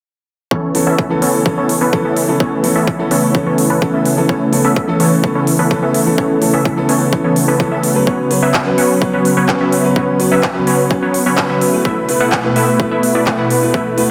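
Soaked in a dreamy hall reverb, this euphoric, uplifting festival progressive house passage in A major at 127 BPM moves from Aadd9 to Esus4/B at 11.9 seconds, with a bright, detuned supersaw stab riff sitting up front through a low-pass filter sweep and analog delay, a thick, warbling vintage pad holding sustained chords under chorus and sidechain pumping, a boxy grand piano accompanying in the background, a punchy overdriven electronic kick, and a big-room kit of handclaps and crisp hi-hats.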